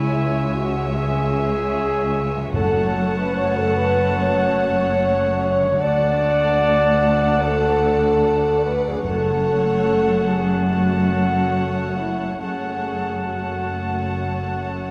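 Bittersweet and sorrowful, this rubato cinematic fragment sets a veiled, con sordino violin melody over muted violin, viola, cello and double bass sections, with a bright clarinet and pure silver flute adding second lines, a distant French horn section up front in sustained chords, a very quiet ringing harp in arpeggios, and soft calf-head timpani sounding from 0.0 to 3.7 seconds and again at 9.0 seconds, all bathed in a recital-hall reverb.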